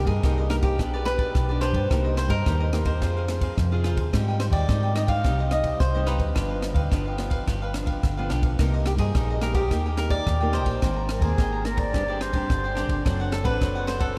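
A crisp, picked cavaquinho melody opens this lively, yearning samba-and-choro excerpt over small, fingerpicked nylon-string guitar and a round, amped hollow-body electric bass sitting up front, with a bright second cavaquinho and a dry cocktail drum kit of punchy kick, dark ride cymbal and rim click joining almost at once, and an airy, distant flute adding a mellow second line at 11.1 s, the whole excerpt ringing in a vast, echoing space.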